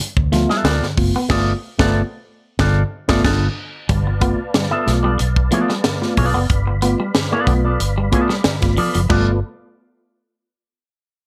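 A playful, funky groove starts at once on a G9 chord, with a compressed, twangy clean electric guitar riff over a foam-muted, round and punchy fingered bass and a tight funk kit with a high-tuned snare, firm kick, hi-hat, crash and dark cymbals, set up front in a small room. A tine electric piano adds stabs through its own built-in speakers almost immediately, and a bright, picked guitar through an envelope filter follows with accompaniment bathed in plate reverb. From 1.3 s the whole band hits a shared accent. At 3.9 s a mellow tonewheel organ slips in quietly above with sustained chords, its slow rotary speaker and chorus vibrato adding gentle motion, plus a touch of plate reverb. The straight, steady groove carries on under light room reverb until this short slice of a longer piece is cut off.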